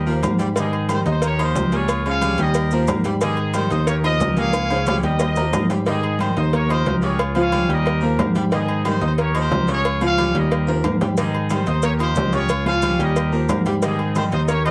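A punchy, bright trumpet section opens this joyful, danceable salsa excerpt in Ab major at 181 BPM, carrying the melody with vintage vibrato and a slapback echo, while a barky tine electric piano sits up front holding down the bass line. Almost at once a clear saxophone section with light vibrato adds a tight second line in the background, and a present grand piano fills out the accompaniment across a broad range. The percussion is layered beneath: distant, thin-skinned congas heard as if in a large room, a tight high-tuned cowbell, and ringing metal-shell timbales with agogo bells, close and dry. Grainy, mellow maracas sit in the back, dropping out at 5.9 seconds and returning at 11.2 seconds, while a drum fill around 4.5 seconds marks the turn into the repeated section. The harmony cycles steadily through Eb, Abmaj7 and Db under light reverb and a close, detailed sound.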